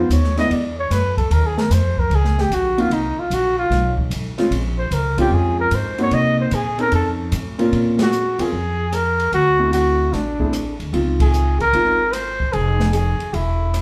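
A dark, breathy trumpet with vintage vibrato leads this moody, swinging excerpt of small-group swing and bop in Bb minor at 150 BPM, soloing up front through the first 7.7 seconds before the band hits accents in the second section. Beneath it, a woody, thumpy pizzicato upright bass sits close, an intimate concert grand with deep lows and audible action noise comps until it stops at 12.0 seconds, and an airy, polished drum kit with dark cymbals, a boomy kick, hi-hat, ride, snare and rim clicks sits lower in the mix. Moody chords like Ebm69, Cm7b5 and Dbmaj9 move under it all, and a wet club reverb places the group at a distance in the room.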